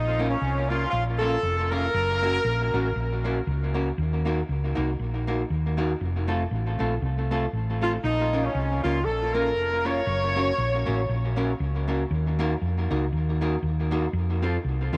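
A round, punchy hollow-body electric bass sits up front through this driving, energetic ska excerpt in Bb harmonic minor at 118 BPM, with a swung feel over a Bbm–Gb–Ebm–F progression that repeats. A tight horn section with light vibrato plays the melody in two bursts, from 0.0 to 3.2 seconds and again from 7.8 to 11.4 seconds, its lines carrying tape echo. A dark, clean vintage jazz guitar enters at 0.2 seconds with picked accompaniment, also touched with tape echo, all set in a small room with light reverb.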